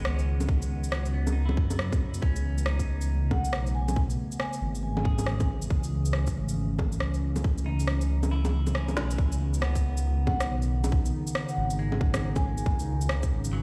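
A twangy, bright clean electric guitar with vintage 12-bit sampler grit and tape echo opens this rainy, ghostly future garage excerpt in C# minor at 138 BPM, over a warbling, nostalgic pad with chorus and a deep, rumbling detuned saw bass with tube saturation, all three pumping to the sidechain as the chords move from C#m9 to Aadd9. A tight, up-front electronic kick and a woody snare with rim click, shaker and bongos swing on the 16ths, while a mellow vibraphone played with soft mallets rings out a short metallic melody with tape echo from 3.3 seconds. The kick drops out at 8.3 seconds before a drum fill at 9.0 leads into a C#7sus2 passage, all heard through the stone reverb of a bare room.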